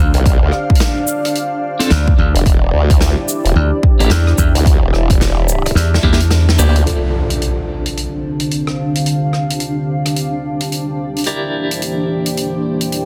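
Glitch hop at 109 BPM in D minor, gritty and playful, with a swung sixteenth-note feel, cut from a longer piece. A moody, detuned analog pad and a blurred, evolving granular cloud pad sustain throughout, both pumping against the sidechain, while a punchy, layered electronic kick and a natural acoustic kit of hi-hat, rim click, shaker and medium-tuned snare drive the groove. Two basses sit up front in the opening half: a bright, foam-muted thumbed slap bass and a sawtooth formant-sweep wobble bass thickened with chorus and overdrive, both stopping around 6.6 to 6.8 seconds. A dark, clean fingered electric guitar enters at 1.8 seconds with stabs colored by tremolo, digital delay and a low-pass filter, over chords moving from Dm7 to Em7. A drum fill, a brief kick dropout and a band accent lead into an electronic impact at 6.9 seconds, after which the guitar's filter sweeps over the pads and kit as the harmony closes on Em7b5. 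The dense, heavily limited master carries light small-room ambience.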